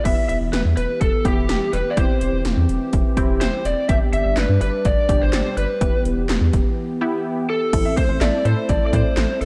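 A dark, overdriven electric guitar sits up front and carries the melody, its picked notes trailed by delay, in this melancholic, cool synth-pop passage cut from a longer piece at 125 BPM in a straight 4/4. Beneath it, punchy 80s electronic drums pair a punchy kick and gated snare with metallic hi-hats, handclaps and crash cymbal, roughened by overdrive and given the size of a large room. A round, deep analog bass anchors the low end, while a funky polysynth comp of detuned sawtooth and pulse waves adds filter plucks softened by chorus. A warbling, vintage pad with resonant filter swells holds sustained chords through the Em, C/E and G progression. After a break from 6.8 to 7.7 seconds, the harmony moves to Am, and a baby grand piano with open, long-sustaining tone enters quietly in the background at 7.9 seconds with a delayed second line, all set in a warm production with light reverb and digital ambience.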